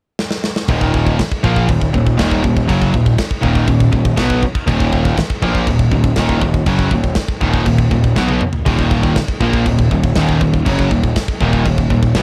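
Heavy metal excerpt at 120 BPM in Eb minor, aggressive and dark, in which a gritty, saturated, up-front metal drum kit with bright cymbals and a tight kick opens with a fill at 0.2 seconds before, at 0.7 seconds, three picked electric guitars (an overdriven sludgy one, a distorted tight one and a very quiet, double-tracked sludgy one) and a growly, fuzz-laden electric bass enter together to play an Eb minor riff in the background, with another drum fill at 8.2 seconds, all under light reverb and a dark, warm production.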